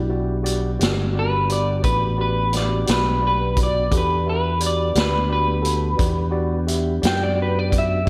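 A smoky, soulful slow blues in 12/8 opens on an Em7 with a slightly broken-up electric guitar through a small old amp carrying the melody up front with analog chorus, a barky, gritty overdriven tine electric piano accompanying with slapback echo, a mellow, flute-like tonewheel organ holding sustained chords through a slow rotary speaker in the background, and a round, punchy fingered electric bass, before a vintage drum kit with a medium-tuned snare and rolled-off top joins at 0.5 seconds, the band sitting inside a lush hall reverb with a big arena sound in this short excerpt.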